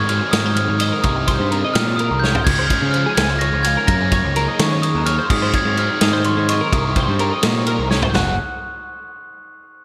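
A mellow, bell-like glockenspiel played with rubber mallets carries the melody from the first moment, over chiming, clean twelve-string electric guitar arpeggios treated with chorus and delay, a growling overdriven bass up front, and a crunchy, double-tracked guitar riff sitting in the background. This bright, intricate fragment of math rock and midwest emo moves in a straight 6/8 through Ab7sus4, Cm7, Dbmaj7 and Gb chords. A loose, small-room indie drum kit with a tight kick and gated reverb enters at 0.1 seconds and adds fills at 2.2 and 7.9 seconds, all framed in a glossy 1980s-style digital production.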